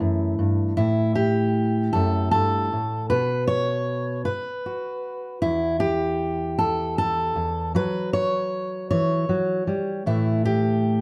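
A slow, straight 6/8 sway carries this wistful, intimate folk fragment, cut from a longer piece. A single fingerpicked steel-string dreadnought plays alone from 0.0 to 11.0 seconds, full-bodied and up front, with audible finger squeak as it moves from Em through Bsus2, a brief unharmonized moment, then F#5 and A5. It was captured live in one room, with a moderate, large studio reverb around the guitar.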